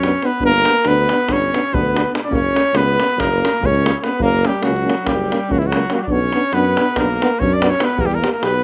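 Balkan brass band folk music in 9/8, this bittersweet, fiery excerpt runs at 285 eighth-note beats per minute with a straight feel. The trumpet carries the melody up front, its warm tone shaded by light vibrato and a smooth top, while the close-miked alto saxophone plays a second line with vibrato in the background. A dark French horn and a euphonium with vibrato, which enters at 0.1 s, fill out the accompaniment, and a mellow, soft-attacked tuba holds down the bass beneath a deep, acoustic davul. All the wind players lean toward a classical style, and the trumpet, saxophone and horn carry a slapback echo. The harmony moves from G to F# and on to Bm, reaching Em at 8.0 s, and the outdoor recording has very little reverb.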